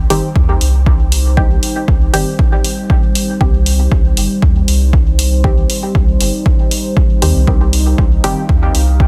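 A dense, heavily limited modern master with digital ambience frames this nocturnal, hazy dub techno cut, a short slice of a longer piece in C minor at 118 BPM in straight 4/4, resting on a single C minor chord. A soft, round dub sub bass with tube saturation starts at 0.0 s, joined by a punchy, up-front electronic kick and a layered electronic hi-hat in studio reverb, while a muted, detuned chord stab with chorus, phaser and dub echo shifts beneath a filter sweep. From 0.7 s a deep, warbling, vintage-toned ambient pad holds sustained chords with a slow attack and long release, its chorus and built-in reverb sharing the sidechain pumping that also moves the bass and stabs.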